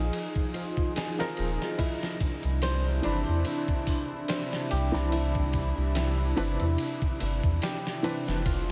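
Brooding and hypnotic, this short trip hop excerpt drifts on a warbling, nostalgic pad holding sustained chords and a deep, round dub sub bass sitting up front. A dusty, compressed sampler-style drum kit with a thumpy kick and fat snare swings lazily over them. Around it, a fingerpicked flamenco guitar with finger squeak plays arpeggios through a diffuse ambient delay, a tube shaker rattles in the background from 1.0 s, and a felt-muted upright piano with audible action noise, tremolo, 12-bit grit and tape echo enters at 1.2 s, all soaked in a huge, dreamy reverb.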